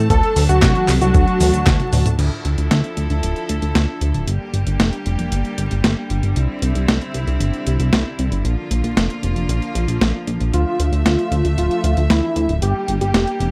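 A clear studio string section and a chorused synth bass open this melodramatic, danceable italo disco excerpt at 115 BPM in a straight 4/4, with the glossy, detuned pulse-and-sawtooth bass sitting up front under bowed, biting ensemble chords touched with light vibrato. A dusty soul sampler-style drum kit comes in with a gritty, overdriven snare, hi-hat, handclaps, cabasa, toms and crash cymbal, joined briefly by a thumpy electronic kick that stops at 1.8 seconds. A drum fill and a band accent close the opening bars before the harmony moves from D through Dmadd9, Gm, Cadd9 and Bb. The thick, nasal unison lead, a warbling sawtooth-and-triangle voice with a sub octave and tape echo, carries the melody at the start and returns at 10.5 seconds. The sound is dry and close in a 1970s studio manner, with vinyl crackle beneath.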